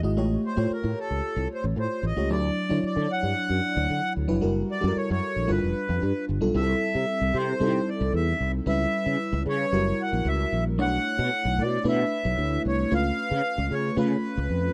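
Polished 1980s jazz-funk pop at 113 BPM in a straight 4/4, this short cut from a longer piece carries a nocturnal, bittersweet mood. A fretless electric bass sits up front from the start, its tone direct and warm, thickened by an ensemble chorus. Alongside it, an FM electric piano with a soft pad layer supplies lush, dreamy chords, with a fast attack that decays into a subtle chorus shimmer. At 0.5 seconds an accordion takes the melody, reedy, warm and up front, its slow beating giving the line a gently wavering character. The harmony moves through rich altered and extended chords, from A7alt and Dmaj9 to Bm11 and C#7b13, shifting into a new section at 6.5 seconds. The sound is dry and intimate, like a close 1970s-style studio recording with little reverb.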